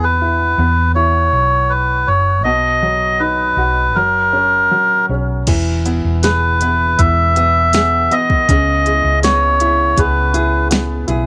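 In a small room, this heartfelt pop ballad excerpt at 80 BPM, tuned to A4 = 445 Hz, sets a reedy, breathy melodica melody up front over clear, intimate, woody upright piano with audible action noise and a dark, round hollow-body fingered electric bass, until at 5.5 seconds a tape-warm electronic R&B drum kit with a soft kick, fat snare and smooth hats joins up front and a full-bodied, fingerpicked nylon-string guitar adds arpeggios in the background.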